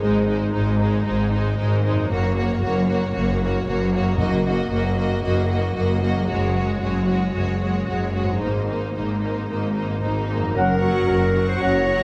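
Opening on lush bowed strings, this heroic, triumphant cinematic passage in Gb lydian at 114 BPM builds over its first 10.6 seconds: a focused violin melody moves alongside a second, distant violin line, intense violas, expressive cellos with portamento and clear double basses, while a mellow, very quiet concert harp rings out arpeggios and a faint timpani stroke lands at 4.2 seconds. A bright solo clarinet enters at 10.0 seconds, then dark, roomy trombones, soft-attack French horns and punchy trumpet stabs arrive, and a light-vibrato oboe sounds near the close, all set in a moderate recital-hall reverb.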